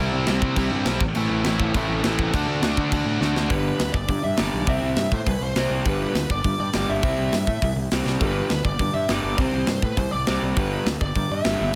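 A straight, driving 4/4 at 204 BPM pushes this upbeat, rebellious punk rock excerpt in G major, where a crunchy overdriven guitar riff and fuzzy picked bass run throughout, a bright distorted second guitar riffs only until 3.5 seconds, a polished, airy metal drum kit with a tight kick and bright cymbals enters at 0.3 seconds with fills at 3.2 and 8.1 seconds, and a dark, bluesy lead guitar with digital delay carries the melody from 3.5 seconds over chords moving from C, Am and D to alternating G and C, all under light reverb.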